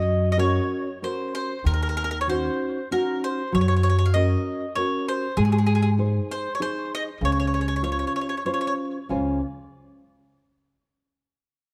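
This Italian folk serenade, a short cut from a longer piece, has a lively, sunny mood and a gently rubato lilt in three. A picked mandolin carries the melody up front, its double strings giving a round tone touched with tape echo, until it stops at 8.7 s. Beneath it, a full-bodied nylon-string guitar supplies fingerpicked accompaniment with a deep classical character. A woody, growly upright bass plays pizzicato on steel strings, sitting up front with the others. Guitar and bass carry on to 9.4 s as the chords move from Gb through Ebm7 and Ab to a closing Dbmaj7, all framed by light reverb and a dark, warm production.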